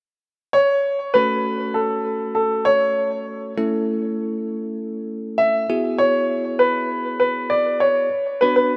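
A grand piano carries the melody from 0.5 seconds, its warm, short-sustained tone sitting up front with a digital delay trailing its notes in the A4 to E5 range. At 1.2 seconds a tine electric piano enters with accompaniment, heard up front, bell-like, bright and clean, as if through built-in speakers. The harmony moves from F#m to A and then Eadd9 as the pop piece settles into a straight four-beat feel. The mood is driving yet nocturnal. A light studio reverb surrounds the pair in a rough home demo mix, and the fragment is cut from a longer piece.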